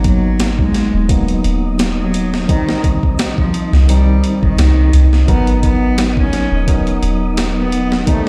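A bowed solo cello, rich and focused with vibrato, tape echo and vintage 12-bit sampler grit, carries a brooding, melancholic G# minor melody in this 86 BPM trip hop excerpt over a clean tine electric piano treated with harmonic tremolo, a filter sweep and tape echo; a deep, round 808-style bass and a gritty, compressed boom bap kit with a thumpy kick and high-tuned snare sit up front with a light swing across G#m7 and Cm chords, an airy, breathy, wind-like tuned noise texture drifts in the background from 0.9 s, and the whole mix rings in stone-room reverb as if played on a big sound system in a bare room.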